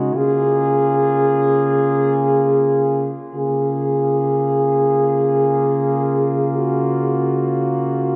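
Hip hop in free time, this spacious, melancholic excerpt features a mellow brass ensemble playing alone up front for 8.2 seconds in a smooth-topped classical style, colored by tape echo and set in a dreamy mix soaked in plate reverb, with a Db6 chord at the start giving way to Gbmaj7 at 6.5 seconds, tuned to A4 = 438 Hz.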